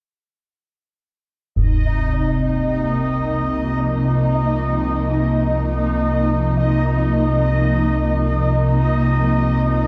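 Dark and cavernous, this excerpt from a longer dark ambient drone piece drifts in free time, tuned to A4 = 437 Hz and bathed in a huge, wet reverb with a 7.5-second tail. At 1.6 s a single low-passed stroke on the concert bass drum, heard in a live room, opens the music as an up-front analog drone settles onto a Bbsus24/C harmony, its sawtooth and pulse-wave tones warbling with chorus and pulse-width modulation. At the same moment a bubbling stepped-filter texture swells in, bright, resonant and detuned, its random filter steps glinting through chorus and built-in reverb. A granular cloud pad joins at 2.6 s with sustained sine chords, blurred and full-bodied, evolving between the low drone and the bright texture. The whole recording carries the worn, warbly pitch drift of old cassette tape, lending the drone a vintage, unsteady character.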